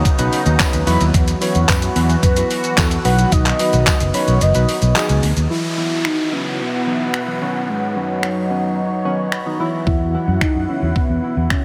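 A straight 4/4 dance-pop groove at 110 BPM comes from a detuned 8-bit drum machine with a thumpy kick, snaps, claps, hi-hat, shaker and snare, joined by a punchy fingered electric bass that drops out from 5.5 to 9.9 seconds and a very quiet, jingly tambourine early on, while the kick briefly falls silent just before the second section. Above, a resonant, evolving sawtooth pad and round analog keys pump with sidechain, the keys adding a fill at 8.8 seconds, as a soft, full-bodied octave-layered synth lead with chorus, phaser and delay carries the melody and downlifter effects appear. This euphoric, summery excerpt is a dreamy mix soaked in huge ambient reverb.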